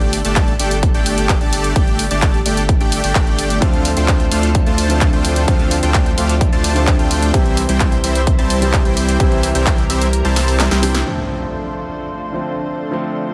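Dry and punchy, this excerpt of powerful, anthemic festival progressive house in D minor at 129 BPM opens on a drop where a huge, detuned supersaw riff with filtering and delay, a deep saturated sub bass and a gritty chorused background pad pump together over a layered big-room kit with handclaps, hi-hat and snare. A tape-warm kick stands up front from 0.4 seconds, an intimate grand piano with audible action noise joins at 3.6 seconds, and after the kick drops out, a drum fill and a band accent lead to an electronic impact at 11.1 seconds as piano and pad sustain over Dm7.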